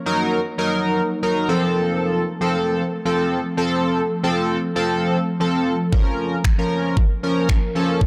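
A straight 4/4 dance-pop pulse drives this energetic, confident fragment, as a glossy, retro chorused polysynth up front and a mellow, ethereal pad in the background both pump with sidechain through Ebm, F and Bbm, until a knocking, layered electronic drum kit of kick and finger snaps arrives at 5.9 s in a dark, lightly reverberant mix.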